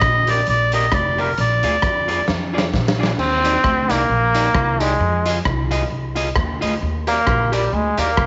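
Ska at 132 BPM in Eb major with a swung 4/4 feel, this joyful, cheerful passage is cut from a longer piece and sits in a moderate spring reverb, with nothing above 7.8 kHz. A reedy, nasal melodica carries the opening melody up front until 2.3 s, over a woody pizzicato upright bass on steel strings and a raw garage drum kit with a punchy kick, medium-tuned snare, rim click, hi-hat and crash, heard in a bright stone room. A slightly broken-up, picked electric guitar fills in the accompaniment from 0.3 s, and the drums play a fill that leads into the second section at 3.2 s. There a brilliant, forceful trombone takes a jazz-style solo with vibrato, up front, while a jingly tambourine joins in the background with slapback echo. The harmony moves from Ebmaj7 to Bb7 and back to Ebmaj7, then through Fm7 before returning to Ebmaj7.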